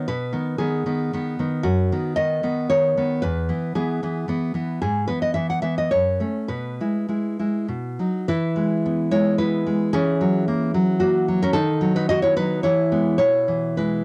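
Nostalgic and warm, this short excerpt from a romantic solo classical guitar piece moves in 3/4 at roughly 100-116 BPM, with rubato giving the time a gentle, breathing flexibility in E major. The fingerpicked nylon-string guitar sits up front with a full-bodied, deep classical tone, ranging from E2 to F#5 over flowing harmonies that settle onto E at 3.2 seconds and again at 8.3 seconds as a second section begins. Light reverb and the soft grain of a home cassette recording lend the 14-second fragment an intimate, keepsake quality.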